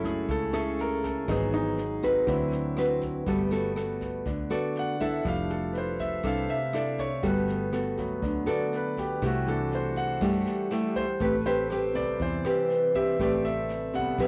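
A relaxed, sophisticated bossa nova fragment opens with a clear, long-sustaining grand piano soloing up front over a warm, fingerpicked classical nylon-string guitar, both treated with cassette tape and plate reverb, while a round, dark, foam-muted fingered electric bass and a brushed jazz kit of boomy kick, rim click and medium-tuned snare, also run through cassette tape, sit beneath a straight feel and lush jazz chords in a home-recorded studio room.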